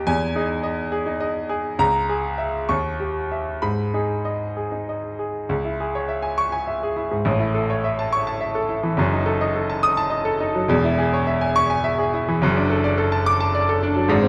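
Passionate and stormy, this fragment of a longer piece is a classical virtuoso piano study in 6/8, moving with a free, rubato pulse of roughly 63-72 BPM counted in dotted quarters. A solo grand piano carries the whole passage from 0.0 to 14.3 seconds, its tone clear and slightly worn, sitting present and up front across a span from E1 to D#6. The opening phrase rests in G# minor, passing through Emaj7, a half-diminished chord over C#, and a tense D#7b9 before settling on G#m. At 5.5 seconds the music turns to C# minor, moving through A major, a diminished chord over F#, and C#m over E before ending the fragment on D over F#. Close, detailed microphones capture the instrument intimately, while a moderate recital hall reverb of 1.4 seconds gives the sound a natural sense of space.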